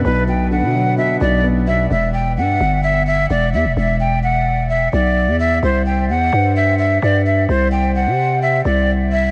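A half-time trap groove rides on a growling, buzzy 808-style bass that sits up front throughout this eerie, melancholic hip hop fragment cut from a longer piece. A breathy jazz flute with vibrato carries the melody the whole way, softened by a low-pass filter and trailed by analog delay, while a dark, mellow baby grand piano with audible action noise murmurs in the background only until 1.9 seconds. Chords move from Bm to Esus2 and then to C at 5.6 seconds, and a huge ambient reverb soaks the mix in a dreamy haze.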